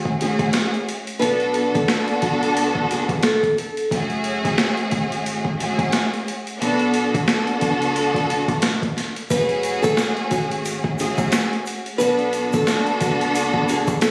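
A lush bowed string section opens this moody, gritty boom-bap hip-hop excerpt, its expressive vibrato and portamento sitting up front with a smooth top and a cassette-tape patina, while a deep, round, dark fingered electric bass hums beneath. A compressed, sampler-style drum kit joins almost at once with a thumpy kick, a high-tuned snare and hi-hat, all carrying the roomy character of a large-space re-recording and a lightly swung groove. A small, fingerpicked nylon-string guitar with fresh strings carries the melody through a digital delay from 0.2 to 3.5 seconds, then drops out and returns at 9.3 seconds. A grainy, bright tube shaker enters in the background at that same moment, close and dry. The harmony rocks between two minor-flavoured chords, and the whole piece has a light reverb, vinyl crackle and the lo-fi feel of a phone capturing the room.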